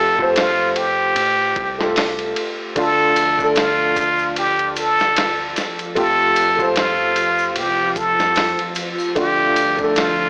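Trip hop at 75 BPM with a swung sixteenth feel, this brief excerpt sets a hypnotic, brooding mood over chords moving between Fadd9 and Dm. Up front, a close-miked trumpet with a plunger mute carries the melody with a breathy, wah-wah tone, light vibrato and tape echo, sitting between F4 and A4. A felt-muted upright piano accompanies from the start, its soft, intimate sound carrying audible action noise, tremolo and tape echo. A dark, round fingered electric bass sits low in the background, and a dusty sampler-style drum kit with a thumpy kick, medium-tuned snare, hi-hat and ride enters at 0.2 seconds, compressed and gritty under studio reverb. At 2.8 seconds, a string machine with cellos adds sustained, sawtooth-edged chords with ensemble chorus, while a distant tube shaker and triangle ring softly in the background. The overall sound is dry, with the lo-fi character of AM radio.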